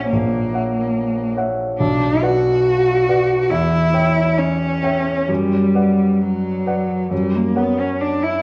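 Elegiac and melancholic, this romantic classical fragment in B minor moves at an unhurried, rubato 65-74 BPM in 4/4, with a clear, smooth bowed cello singing the melody with vibrato up front while an intimate concert grand piano accompanies with deep bass, long sustain and audible action noise, all set in a reverberant recital hall and colored by the worn, warbling pitch drift of old cassette tape.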